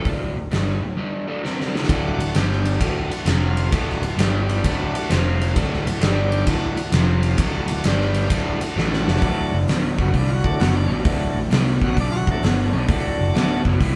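Swaggering and raunchy, this blues rock and southern rock power trio groove swings, with a crunchy, bright, double-tracked guitar riff and a round, punchy picked bass driving from the start over a big, dark drum kit with a fat snare and punchy kick. A gritty, shouting tonewheel organ through a slow rotary speaker joins at 1.9 s with sustained chords as the harmony rocks between D and G5 and F5. After a drum fill, the organ takes a solo from 9.2 s in this live-in-one-room recording bathed in wet studio reverb.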